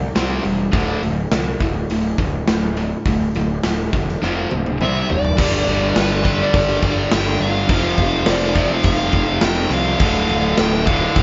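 A bright, double-tracked high-gain guitar riff and a punchy fuzz bass open this menacing, aggressive hard rock excerpt in straight 4/4, joined at 0.2 seconds by a big-room acoustic drum kit with a punchy kick and bright cymbals. A drum fill from 4.2 seconds leads into a new section, while a dark, smooth overdriven lead guitar carries the melody from 4.8 seconds over chords moving through power shapes to a closing minor chord. The band sounds like it's playing live together in one room, with moderate reverb and the riff guitar and drums up front.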